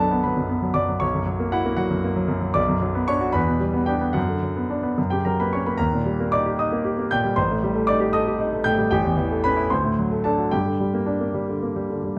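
Classical virtuoso piano study, stormy and agitated, in a rubato 6/8 at roughly 72-79 BPM, where a solo concert grand with a clear tone, deep bass and short sustain sits up front, ranging from A1 to G6 through a restless B minor passage that turns to G minor at 5.8 s, all set in a dark production with light reverb for this 12-second excerpt.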